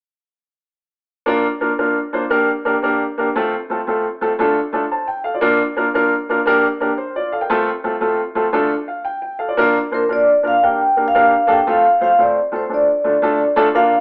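Soul at 116 BPM in Bb major with a swung 4/4 feel, this joyful, danceable excerpt opens on a woody, up-front upright piano cycling through Bb, Gm, F and Dm, adding a fill at 8.6 seconds before a mellow, ringing vibraphone played with soft mallets and medium motor vibrato takes the melody from 9.9 seconds, all heard as a band playing live in one large studio room with moderate reverb and an AM radio sound.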